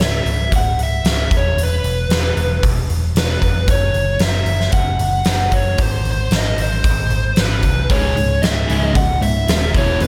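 A straight, driving 4/4 hard rock groove from a big, punchy arena drum kit with a fat snare and a growly overdriven picked bass carries an aggressive excerpt, as a dark, up-front lead guitar through a small cranked amp with slapback echo plays the melody over C#m, E5, F#5 and G# chords, joined at 7.9 seconds in the background by a sludgy distorted guitar and a bright semi-hollow guitar, both playing a riff, all in light studio reverb.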